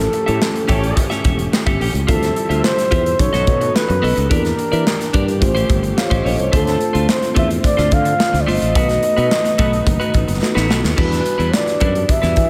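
A straight 4/4 groove at 108 BPM from a punchy, up-front studio drum kit (crash, hi-hat, kick and snare) drives this slick, urban slice of polished 1980s jazz-funk pop, cut from a longer piece, with a growly fretless bass and a compressed, chorused clean electric guitar riff running throughout. A dark, breathy flugelhorn carries the melody with light vibrato, scooped notes and slapback echo. Beneath it sit a mellow tine electric piano with analog chorus and a very quiet, bowed studio string section holding soft sustained chords, while a vintage-toned horn section adds brief second-line touches at 0.7 and 9.6 seconds, band accents mark the opening bars and the stretch from 8.8 to 11 seconds, a drum fill arrives at 10.4 seconds, and a lush hall reverb gives the mix a big arena sound.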